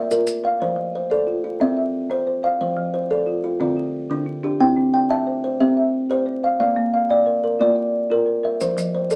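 Southern African traditional music built on an mbira-style interlocking cycle, this hypnotic 9-second excerpt moves in a steady, straight 12/8 at 120 BPM in F major, cut from a longer piece. A plucked kalimba sits up front with a hollow-box, fingertip quality, its short, airy arpeggios spanning D3 to G5 throughout. Beneath it, a folk marimba played with soft mallets adds round, rustic arpeggios on hardwood bars, dry and woody in tone, ranging from D3 to A5 at a lower level. Grainy maracas appear only briefly, close and dry, at the very start and again from 8.6 seconds to the end. The harmony moves through Bb, F, C, F, Dm, C and Bb before settling on an F5 chord, all set in a small, moderately reverberant room with a layer of vinyl crackle lending an aged warmth.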